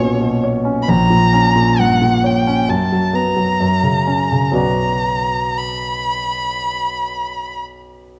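A dark, warm production places both players up front in a recital hall whose reverb lingers for 1.6 seconds. This is a melancholic, solemn romantic classical duo for violin and grand piano, taken from a longer piece and played with a flexible, rubato feel in 4/4. A single bowed violin carries the melody in its upper register, its tone rich and focused with a singing vibrato. The concert grand accompanies with a bright, brilliant, polished sound, reaching down into a deep bass while its notes decay quickly. The violin falls silent at 7.6 seconds, leaving the piano to finish alone until 8.2 seconds.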